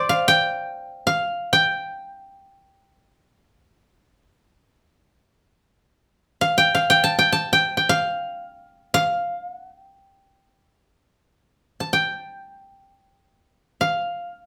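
Flowing in free time, this calm, austere fragment of Japanese traditional chamber music unfolds in a G suspended pentatonic mode, tuned to A4 = 440 Hz. A single koto plays alone for the full 14.5 seconds, its acoustic, woody tone shaped by fingerpicks. The koto is dry and up front, holding to a compact upper register between C5 and A5. Around it, the studio adds a wet reverb with a short 0.6-second decay, and the room is heard as if from further back. The result is a spare, quiet passage lifted from a longer piece.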